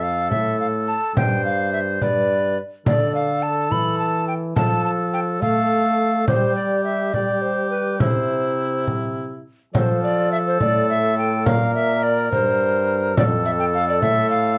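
A hollow, airy tenor recorder opens this stately, festive Renaissance-style consort dance, carrying the melody over a cor anglais second line and a trombone bass. The tempo is a steady 70 beats per minute in a straight 6/8. A small, bright frame drum enters at 0.3 seconds, played with hard hands and heard in a live room. The recorder's chiff and gentle vibrato sit up front, while the cor anglais adds a warm voice with light vibrato and the trombone's clear bass sounds distant and roomy. The harmony moves among F, suspended G and C chords, and the opening strain begins again at 9.7 seconds before this excerpt, cut from a longer piece, ends. Light reverb and a dark production give the consort a soft, enclosed glow.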